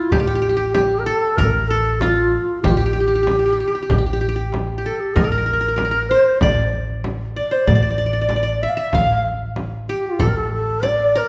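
A moderate recital-hall reverb surrounds this short cut from a longer Arabic maqam ensemble piece, whose longing, melancholic mood is carried by a breathy, reedy low ney sitting up front with soft-attacked vibrato. Beneath it, a fingerpicked qanun traces a bright-edged second line on its triple strings, while a woody, thumpy pizzicato upright bass holds the bottom. A deep, compressed and saturated frame drum, played with soft hands, and a very quiet clay darbuka struck with hard hands keep the pulse across the cut.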